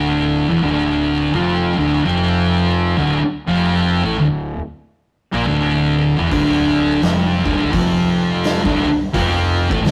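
Up front, a dark, picked fuzz guitar grinds out a brooding, hypnotic stoner-doom riff in a swung 4/4, joined by a second distorted guitar sitting in the background and a growly, overdriven fingered bass, and at 6.3 seconds a gritty, saturated, oversized low-tuned acoustic kit with a punchy kick, medium-tuned snare and hi-hat crashes in, all in a rough rehearsal-room recording with warm saturation and a moderate stone-room reverb, cut from a longer piece.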